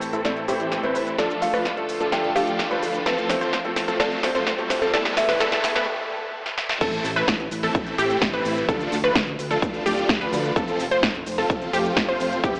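Set in a moderate, huge ambient reverb and thinned to an AM-radio tone, this emotional, anthemic festival progressive house excerpt at 128 BPM in A minor builds with a woody kalimba melody, a clear grand piano and smooth bowed strings in the background, a crisp-hatted big-room drum kit, a very quiet riser, a detuned unison pluck arpeggio and a euphoric, bright supersaw riff under a filter sweep, until a short break gives way at 6.8 s to a drop where a punchy electronic kick and a fat, saturated analog bass join in.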